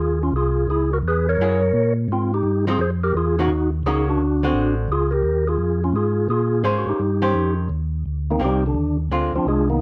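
Swinging, bluesy jazz in Ab major at 171 BPM, with a strong swing on the eighth notes, light reverb and a worn, warbling cassette-tape drift across this fragment of a longer piece. A soft, flute-like tonewheel organ with key click, third-harmonic percussion and a fast rotary speaker carries the melody up front, while a second organ, round, dark and lightly overdriven with chorus vibrato and a slow rotary, plays the bass. A clean, compressed, picked hollow-body archtop guitar joins at 1.4 s to add accompaniment, and a tonewheel organ solo begins at 7.7 s as the tune moves into a new section.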